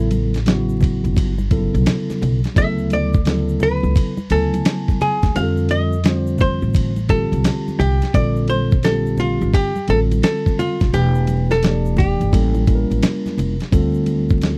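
A dry, close 1970s-style studio sound with vinyl crackle frames this cool, mellow jazz-hop excerpt in D minor at 86 BPM, swung on the sixteenths, with a gritty, compressed sampler-style drum kit up front, its thumpy kick and fat snare joined by hi-hat and ride. A woody, dark pizzicato upright bass and a clean tine electric piano heard through its built-in speakers carry chords such as Dmaj9, F13 and Bbmaj13, while hard-hand congas and egg shaker sit in the background. A hollow-body archtop guitar, picked and compressed, plays the melody until 13.3 s, just before the progression resolves on Dm7 at 13.7 s.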